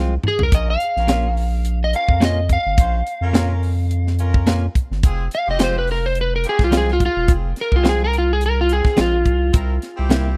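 Mournful and smoky, this excerpt of straight-eighth soul blues opens with a brief drum fill from a tight funk kit, whose dry, high-tuned snare and tight kick sit up front beside a deep, saturated sub bass. An electric slide guitar, slightly broken-up and played with fingerpicks, carries a solo melody through tape echo from 0.3 seconds, while a clean, compressed, direct-recorded electric guitar adds picked stabs. A jazz-style horn section holds quiet sustained chords beneath them all as the harmony moves from Fm to Bbm and back, turning to C7 at 9.5 seconds, all in a close, 1970s-style studio sound.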